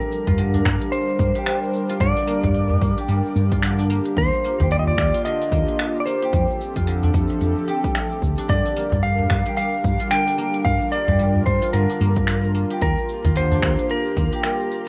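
Organic downtempo in G minor at 111 BPM, this meditative, hypnotic passage cut from a longer piece rides a 16th-note swing through a cycle of Gm7, Ebmaj7 and Fadd9. Up front, a dark, clean lap steel guitar carries the melody with slide and volume swells, its notes trailing through digital delay. A guzheng played with fingerpicks rings out silvery arpeggios, also echoed by digital delay, while an airy, breathy pad with a detuned sawtooth edge, a noise layer and chorus holds soft sustained chords that pump with sidechain compression. From 0.3 seconds, a round, hollow-body fretless bass with a woody, amped tone anchors the low end and pumps with sidechain as well, joined by a punchy, overdriven electronic kick. An afro-pop kit adds cabasa, finger snaps and crisp hats with a tape-warm, small-room character, and a close, dry udu sits in the background, all within a digital ambience and a rough home demo mix.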